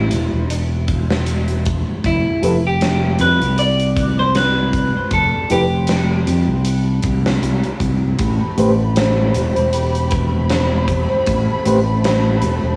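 A brooding, melancholic trip hop fragment opens at 0.0 s with a clean, picked electric guitar melody roughened by 12-bit sampler grit, cassette tape and dub echo, set over a bright, up-front fingered bass with transformer saturation and a huge hall-sized drum kit of hi-hat, punchy kick and snare. At 2.4 s a reedy, overdriven electric piano enters through a combo amp with medium tremolo, 12-bit sampler grit and tape echo over Fsus2. At 8.2 s the harmony shifts to Am9 as a bowed chamber violin section sustains expressive, vibrato-rich chords and a delicate, slightly out-of-tune music box tinkles arpeggios through tape echo, the whole mix sitting in light reverb with the ambience of a cassette home recording.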